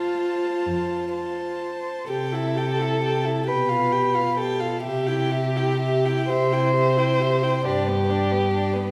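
Serene and lyrical, this short cut from a slow romantic movement for string quartet drifts in 6/8 at roughly 40-46 BPM in dotted quarters, with a flexible rubato in C major, tuned to A4 = 441 Hz. One violin carries the melody between B4 and A5 with light vibrato, a soft attack and an airy sul tasto bow, sounding intimate and close. The second violin, playing a supporting line from G4 to C5, is darker and woody with vibrato, and it sounds louder than the melody. Beneath them, the viola's gentle sul tasto accompaniment shares the first violin's tender quality, while the cello anchors the bass from F2 to C3 with a pure, floating tone and a smooth top. All four players sound together from the opening to about 8.9 s, and the harmony moves from F to C at 2.1 s, then through G7/B and back to C before settling on G. A recital hall reverb with a 1.5-second decay surrounds the quartet in a soft, spacious glow.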